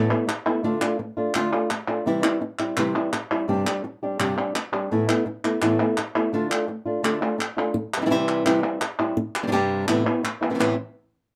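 A thumb-plucked flamenco guitar carries the melody up front, its tone acoustic and warm as it ranges from G2 to G4 in A minor. Palmas hand claps join at 0.1 seconds, sitting close with a crisp, vintage, band-limited character. The tempo is a brisk 169 BPM in a straight 4/4, and the mood is fiery and dramatic. The harmony cycles through Asus2, Dm, C and Gsus4 twice before settling on Amadd9 and a rootless Am near 10.6 seconds. A light reverb surrounds the pair in this short cut from a longer piece, which runs to about 10.7 seconds.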